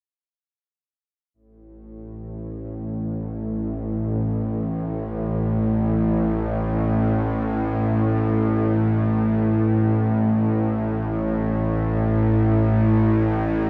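Ambient in free time, this excerpt from a longer piece carries an ominous, desolate mood through a single bowed-like drone that plays alone from 1.9 to 13.7 seconds. The drone sits low, spanning A1 to A2, with a string-like, sawtooth edge thickened by detuned unison voices and a layer of noise. Its slow attack, sustained body and long release keep the sound hanging in the air, while vibrato colours a tone that feels tense throughout. Bright and up front, the drone carries its own built-in reverb and tape echo, and the whole recording sits in a wet echo chamber with a 2.6-second reverb tail, giving the mix a heavy, echo-laden atmosphere.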